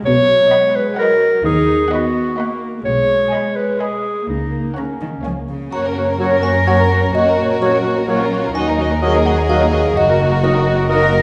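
Bathed in the lush reverb of a recital hall, this playful, mischievous film cue in 3/4 sets softly bowed, intimate sul tasto chamber strings (two violin sections, violas, cellos and double basses) beneath a bright, up-front solo clarinet, until at 5.7 seconds a delicate, tinkling music box adds a melody while a background oboe, a very quiet mellow bassoon and a dark, distant French horn section holding sustained chords join at 6.2 seconds.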